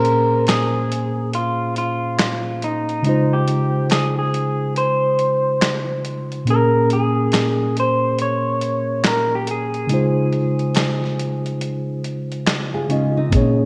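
A melancholic, hazy lo-fi hip hop excerpt opens with an electric guitar through a small old amp, a mellow tine electric piano and a dusty soul sampler-style drum kit all sounding together at a relaxed 70 BPM in 4/4, with a 16th-note swing and a tuning of A4 = 438 Hz. The fingered guitar carries the melody in a dark, slightly broken-up, compressed tone. Beneath it, the electric piano plays clean, warm accompaniment through built-in speakers, colored by cassette tape, over the chords Bbm9, Dbmaj9, Bbm7 and Dbmaj9. The gritty, compressed drums bring a thumpy kick, a medium-tuned snare, hi-hat and handclaps, re-recorded in a large room and sitting up front alongside the piano and guitar. After the guitar melody stops at 12.0 seconds, a dark, classical-sounding nylon-string guitar slips in at 12.7 seconds with a brief fingerpicked second line, finger squeak audible, trailed by tape echo. A moderate, lush hall reverb and a rough home-demo mix on cassette tape give the recording its hazy, worn character.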